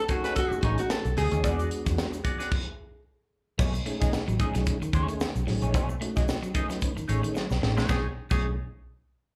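Funk at 112 BPM in B mixolydian with a swung sixteenth feel, playful and energetic, cut from a longer live club gig heard through the venue's PA with little reverb. A full-bodied, fingerpicked nylon-string guitar carries the melody with finger squeak through a break that stops at 2.5 seconds. A raspy, growling tenor saxophone adds brief scooped second-line phrases, while a wah-treated clean electric guitar accompanies and a flute-like tonewheel organ with key click, chorus vibrato and slow rotary speaker plays stabs over a tight drum kit with a high-tuned snare, a grainy background tube shaker, and a dark, round, foam-muted bass. At 3.6 seconds a slightly broken-up electric guitar riff enters in the background, and a drum fill at 7.4 seconds leads into the final section, with slapback echo on the guitars, organ and saxophone.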